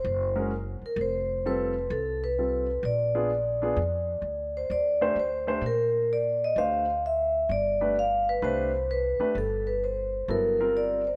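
A swinging 4/4 groove at 129 BPM, with the eighth notes swung, drives this playful small-group jazz passage in C major, cut from a longer piece. The vibraphone carries the melody up front, its medium mallets giving a metallic, ringing tone with the motor off, moving between A4 and F5. Underneath, a pizzicato upright bass with steel strings supplies a woody, dark, thumpy low end, while a warm, vintage concert grand piano comps from 0.4 s, sounding intimate and smooth with audible action noise and deep bass. The harmony travels through colorful changes such as Fadd9, Bb7b9, Ebmaj7 and Dm7 before settling on Csus2 and closing on Gm7 around 10.3 s. A moderate echo chamber reverb, with a 1.8-second decay, gives the small group a roomy sense of space across its 11.2 seconds.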